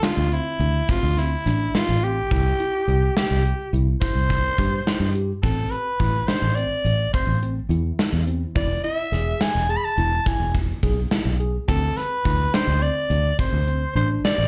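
Heard live through the venue's PA with a light club reverb, this brooding, tense stretch of progressive instrumental band music moves in 11/8. A raspy, gritty soprano saxophone carries the solo melody up front with vibrato and a slapback echo, over a clean tine electric piano playing arpeggios through a phaser, slapback and tape echo. A gated 80s drum kit with a tight kick and a bright stone-room sheen drives the piece alongside a dark, round fingered electric bass that enters at 0.2 s, as the chords move from D5 through C, Am and E back to D5.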